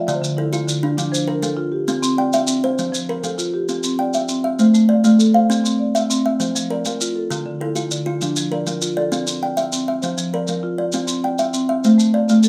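An airy, hollow-toned kalimba leads this rippling, warm fragment of southern African traditional music, weaving mbira-style arpeggios in C mixolydian at 133 BPM in a straight 12/8 over a rosewood marimba played with medium mallets, while grainy maracas add a mellow shimmer beneath a cycling progression of Dm, F, C and Am, all set in moderate studio reverb with a rough, homemade feel.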